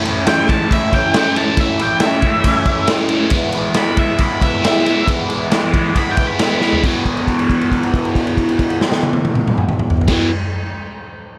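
A distorted octave-fuzz lead guitar solos high over this rowdy, swaggering garage rock cut at 137 BPM in E major, its dark, fuzzy line running from 0.3 seconds until 6.8 seconds, when the music moves to a held note. Beneath it, a bright, scooped, double-tracked overdriven electric guitar drives the riff with a phaser, while a raw, punchy drum kit sits up front with saturated, gritty grit and a rolled-off top, throwing in a fill at 6.6 seconds. Light reverb gives the cut, taken from a longer piece, a loose, room-sized feel.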